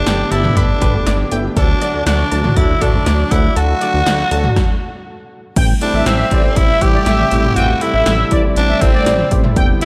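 Melancholic and nocturnal, this 120 BPM synth-pop excerpt in 4/4 puts a raspy, gritty tenor saxophone with tape echo up front, over punchy 80s electronic pad drums with gated reverb on the snare and toms, a glossy chorused synth bass, and, in the background, a shimmering pulse-width pad and a concert grand piano with lush chorus, moving from Gadd9 to D. A bright analog pluck plays arpeggios until 4.5 seconds, and after a brief stop a bold, fat analog synth brass second line enters at 5.6 seconds over Am7. The dreamy mix is soaked in plate reverb.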